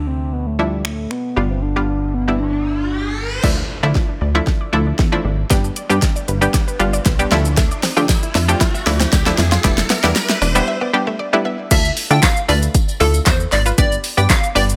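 A soft, round octave-layered synth lead with phaser opens this energetic, bittersweet dance-pop piece over a bright, detuned analog pluck and a punchy, funky analog bass, both pumping to the sidechain, before a deep house drum kit with a deep kick and fat snare drives in; a background riser and impact, a lush, ring-modulated unison pluck arpeggio, a clean, direct-recorded electric guitar riff with chorus and a very quiet, jingly tambourine build the tension, and at 11.7 s a catchy square-wave unison lead with a filter sweep carries the drop under light digital ambience.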